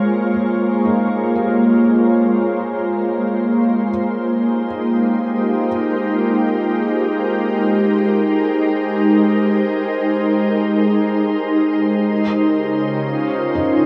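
Serene and spacious, this ambient fragment rests on a pure, full-bodied organ-like pad with ensemble chorus and a filter sweep, holding sustained chords that move from Bbm9 to Abmaj9 and then Dbmaj9, while a muted, mellow felt piano with audible action noise fades in from 0.3 seconds with background arpeggios through diffuse delay until 5.7 seconds, returning briefly at 13.6 seconds, all within a lush hall reverb and a dark production.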